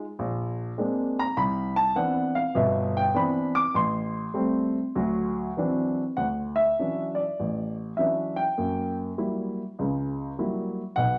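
A moderate large-studio reverb surrounds this swinging, warm solo jazz passage cut from a longer piece, where a dark, mellow baby grand piano sits up front with a natural tone and short sustain, ranging from G1 to D6 at 101 BPM in 4/4 with a loose rubato swing, moving through Bb9, Cmaj9, Am7 and D9 before settling into D major at 6.2 s on Dmaj9 and F#7b9, tuned to A4 = 439 Hz.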